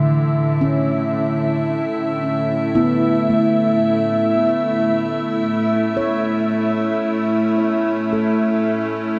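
Ambient music, luminous and weightless, where an evolving, detuned wavetable pad holds sustained Asus4 chords up front with chorus and shimmer reverb, while a ringing handpan of nitrided steel, played with the fingertips and close-miked, spins meditative arpeggios through diffuse delay. At 1.7 seconds a very quiet overtone-sweeping drone enters, its resonant, ring-modulated tones slowly shifting behind the other parts. The production is dark and warm, bathed in a huge wet reverb that lets this cut from a longer piece hang in the air.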